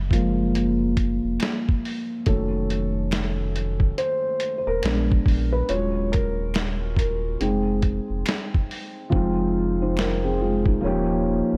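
A dark, thick-felt upright piano leads this melancholic, reflective lo-fi hip hop fragment in a swung 4/4, soloing over jazzy chords such as Gbmaj7 and F7b9b13 above a round sine sub bass, muffled tape-warm sampler drums with a thumpy kick whose hi-hats fall silent at 9.1 seconds, and very quiet, distant finger snaps, the whole mix soaked in a dreamy church reverb.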